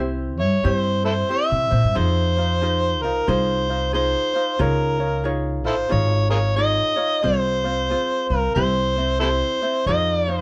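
A lazy swung 4/4 at 91 BPM carries this languid, sunny Hawaiian excerpt in F minor, where a fingerpicked acoustic ukulele and a woody, growly pizzicato upright bass sit under an up-front overdriven harmonica that enters at 0.4 seconds with a gritty, amplified jazz solo full of light vibrato, tongue slaps and scooped notes, bathed in plate reverb within a small room.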